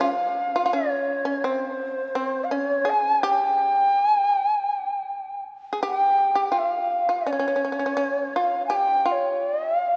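The rhythm moves freely in rubato around a pulse of 83 BPM in 4/4, giving this short cut from a longer piece of Japanese chamber music a calm, austere feel. A long shakuhachi carries the melody in the register from C5 to Ab5, its end-blown bamboo tone airy and reedy with a soft attack and gentle vibrato, sitting a little above the other part in level. Beneath it, a fretless shamisen plays a second line from C4 to Ab4, its plectrum-plucked notes bright, percussive and buzzing. Both instruments play together from 0.0 to 10.0 s, standing up front in the mix. A wet church reverb with a 3.6-second decay wraps the pair in a spacious, resonant church, adding to the meditative stillness.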